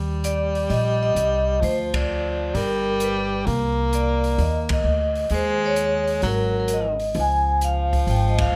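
Lightly reverberant, this relaxed, swinging cut from a longer small-group swing and bop piece features a ringing vibraphone with medium hard mallets and fast motor vibrato carrying the melody, a breathy, up-front baritone saxophone with light vibrato on the second line, a woody, thumpy pizzicato upright bass, and an open jazz kit of hi-hat, boomy kick and dark ride cymbal in a small room, with band accents landing at 1.9, 4.6 and 8.3 seconds.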